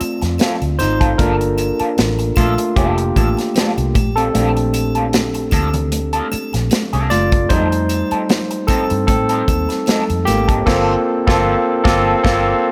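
Light reverb and a small-room ambience give this cut from a longer piece a close, intimate sound. It is lush 1970s-style soul in G minor at 76 BPM in 4/4, with a gentle 16th-note swing and a silky, cinematic mood. An overdriven tine electric piano takes the solo throughout, its tone bright, barky and gritty through a combo amp and sitting up front. Beneath it, an electric guitar through a small old amp plays a slightly broken-up, picked riff with wah. A dark, round, foam-muted fingered bass adds a punchy low end, while an acoustic studio drum kit brings bright cymbals, a medium-tuned snare and a punchy kick. A shimmering triangle stays dry in the background, very quiet warm congas with thick skins enter at 1.2 seconds, and the harmony moves from Dm7 through Gm9, Bbmaj7 and F7 to a Gm11 band accent at 10.7 seconds.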